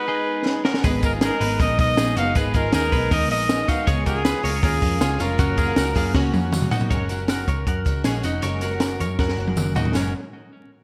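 A nostalgic, youthful excerpt of jangly indie pop in F# major at 158 BPM opens with an up-front pop-style trumpet melody carrying delay, a clean, twangy twelve-string electric guitar playing arpeggios, and very quiet, shimmering, warbling string-machine violins holding sustained chords until 6.9 s. A compact cocktail drum kit with a punchy kick, high-tuned snare and gated reverb enters with a fill at 0.5 s, soon joined by a round, foam-muted electric bass, a picked acoustic archtop guitar with analog chorus and finger squeak in the background, and a jingly tambourine. The bright 1980s-style digital production sits in a small room with plate reverb and vinyl crackle, and the trumpet stops at 6.5 s, just before the harmony settles on F#add9.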